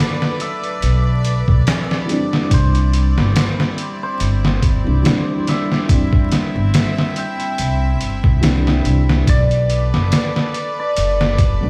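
Dark and smoky, this short trip hop excerpt from a longer piece moves at a slow 71 BPM in 4/4 with a light swing on the sixteenths, drifting from Bm7 to Cadd9 and back to Bm7 at 9.3 seconds. A mellow, hammered cimbalom carries the melody, its shimmering, ringing tone trailed by dub echo. Beneath it, a felt-muted upright piano plays boxy, intimate accompaniment with tremolo and tape echo, while a string section holds soft-attack sul tasto chords that float distant and pure. The sampler-style drum kit sits up front from 0.2 seconds, pitched down and gritty, with a thumpy kick, medium-tuned snare and hi-hat carrying a compressed, tape-warm grit from a small room. A woody pizzicato upright bass on steel strings joins at 0.8 seconds, up front with tube saturation. The whole mix sounds played through a big sound system in a bare stone room, with vinyl crackle adding to its worn atmosphere.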